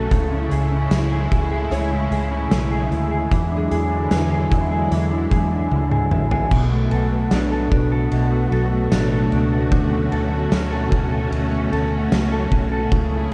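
A mellow electric guitar sits up front, playing compressed, clean arpeggios through lush chorus and digital delay in this dreamy, ethereal dream pop excerpt at 75 BPM in 4/4. Alongside it, a vintage string machine voiced as cellos holds slow-attack sawtooth chords with a sub octave and ensemble chorus, while a foam-muted, fingered electric bass adds a round, punchy low end. An oversized, low-tuned drum kit enters at 0.1 seconds, saturated and gritty in a bright stone room, with a punchy kick, medium-tuned snare, hi-hat, ride, crash, toms and tambourine. A small, fingerpicked nylon-string guitar with digital delay drifts in the background from 1.7 to 5.6 seconds, and a drum fill at 5.7 seconds leads into a new section at 6.5 seconds. The harmony moves from Amaj7/C# and E9 to Bm7 and Dmaj7, all within a dark production with light reverb and small room ambience.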